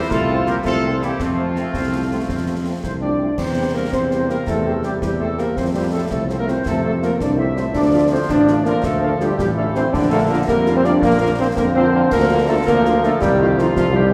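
Spirited and rousing, this military-style march for wind band in a straight 6/8 is carried by a distant, roomy trumpet section sitting in the background with the melody. A soft-attacked euphonium sings a prominent second line beside a mellow woodwind section, while a bright, tight trombone section holds sustained chords and a very quiet French horn section adds accompaniment. A warm tuba anchors the bass, and concert snare drum, concert bass drum and dark-toned clash cymbals drive the march, all bathed in a long church reverb as the music moves into a new section at 3.4 seconds.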